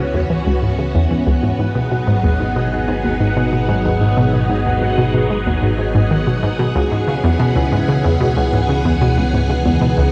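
A hollow, bouncy square-wave pluck drives this cosmic, expansive stretch of sequencer-driven space music, its chorused and delayed riff sitting up front over swirling, vintage string-machine chords treated with ensemble chorus and phaser. Beneath them a fat, nasal analog bass holds the low end while a bubbling, resonant texture with random filter steps floats high above, all moving at 93 BPM in C# minor from C#m7 to G#m7 and back at 6.8 seconds. The dark production is soaked in a huge reverb, giving this excerpt from a longer piece a vast, drifting space.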